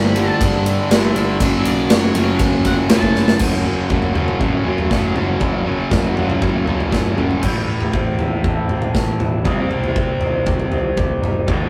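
A big, up-front rock drum kit with a punchy kick and bright cymbals drives this dark, angsty quiet-loud alternative rock excerpt at 119 BPM, entering just after a compressed fuzz guitar riff, a crunchy overdriven rhythm riff, a growly bass in the background and a shadowy octave-fuzz lead melody that drops out at 3.4 seconds after a drum fill at 3.2. A lo-fi, slightly broken-up guitar through a small old amp enters with arpeggios at 7.4 seconds as the fuzz guitar falls away and the chords shift from G and F#m through F#5 to Am and Cm, all captured in a rough rehearsal-room recording with light reverb.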